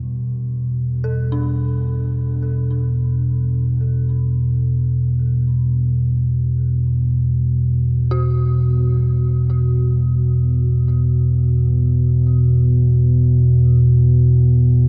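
Cloaked in a huge ambient reverb, this dark, ominous drone in free time and E minor is cut from a longer piece. Up front, a deep, rumbling drone with a nasal, ring-modulated edge and a slow attack sustains in the low register, while an eerie, inharmonic FM synth bell fades in with mellow, chorused arpeggios trailed by tape echo. A very quiet quartz singing bowl rings with pure, slowly beating tones, and the harmony shifts from Em to G at 7.4 seconds.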